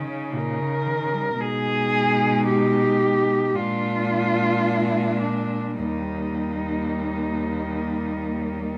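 Close, detailed microphones and light reverb frame this warm, lyrical classical fragment for four con sordino cellos in Eb major, moving at a rubato 47-58 BPM in 4/4 over 8.8 seconds, where a veiled melody cello with vibrato and portamento sits up front above a dark second line, a soft-attacked accompaniment with light vibrato and a bowed bass with portamento, the harmony passing from Eb7/Bb through Abm/Cb and Bb7 to Eb.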